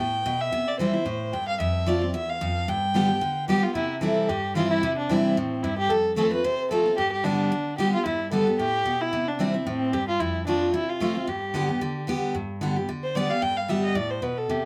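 A dark, woody fiddle and a bright, full-bodied picked acoustic guitar start together at 0.0 seconds, launching this driving, lively bluegrass excerpt at a brisk 223 BPM in 4/4 with a light swing on the eighth notes. The single bowed fiddle carries the melody in G mixolydian, its boxy tone colored by a light vibrato and placed up front. The jumbo steel-string guitar plays the accompaniment just as close, its fresh strings ringing out over a repeating G, C and F chord cycle. A small room reverb with a short decay gives the pair a wet sense of space. At 12.3 seconds the tune moves into a new section where the fiddle takes a solo, running until the clip ends at 14.7 seconds.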